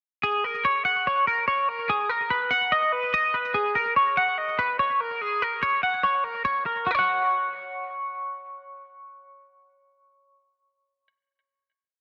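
A moderate spring reverb and a heavy wash of echo surround this short, complete rock piece, giving it a roomy, reflective sound. It is a wistful yet playful solo for a single twangy electric guitar, clean and compressed and sitting up front in the mix, coloured by analog chorus and tape echo. Moving at 145 BPM in a straight 4/4 in F# major, the guitar picks out an ostinato between F#4 and F#5 from 0.2 seconds. The harmony moves from F# through B6 and G#m9 and then to a rootless F#. At 6.9 seconds the piece settles on a closing F#5 chord, and the guitar stops at 11.1 seconds.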